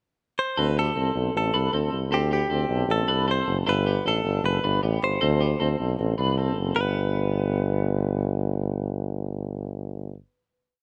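A rough home-demo mix with studio ambience frames this short, youthful and nostalgic jangly indie pop piece in G major at 155 BPM, where a twangy, direct-recorded clean electric guitar with analog delay states call-phrase motifs up front from 0.4 seconds, a ringing twelve-string electric guitar with tremolo plays arpeggios doubled in sixths until 7.9 seconds, and a warm, close-miked tuba carries a rounded, melodic bass line with vibrato and slides through a brief bridge to the final G chord at 6.8 seconds.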